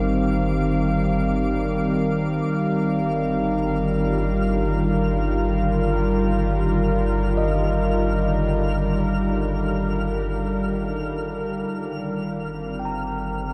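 A melancholic, reflective ambient passage drifts in unmetered, opening on a smooth, detuned sawtooth pad held up front with chorus, sustaining a single Ebmaj9/G chord alongside a deep, round sine sub bass on G1. From the start, a clean tine electric piano fades in with delayed arpeggios in the background, while a sparkling granular texture with an octave-up shimmer fades in high above. At 4.2 seconds a calm, organ-like drone of detuned sines enters softly in the background, slowly evolving under its ensemble chorus. The whole piece sits in a dark, warm production bathed in a huge, wet ambient reverb, tuned slightly low to A4 = 435 Hz. From 8.6 seconds the music begins fading out, and this section, cut from a longer piece, closes at 13.5 seconds.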